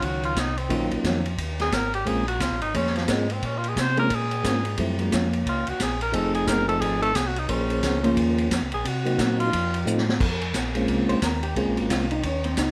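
A swung eighth-note groove in four drives this soulful, smoky soul jazz organ trio fragment, cut from a longer piece and set in a large studio with moderate reverb. The vintage acoustic drum kit sits up front, with a punchy kick, a high-tuned snare, hi-hat, and dark ride and crash cymbals under a rolled-off top. A round, mellow tonewheel organ holds down the bass line through a slow rotary speaker. A clear, forceful tenor saxophone takes a jazz-style solo with scooped notes and light vibrato, and a soft, flute-like percussive organ, also on slow rotary with chorus vibrato, joins the melody shortly after the start. Beneath them, a dark, compressed hollow-body electric guitar accompanies with a clean, picked tone through minor ninth and altered dominant changes. The saxophone drops out at 9.8 seconds, a drum fill follows at 9.9 seconds, and the guitar steps forward for its own solo at 10.2 seconds.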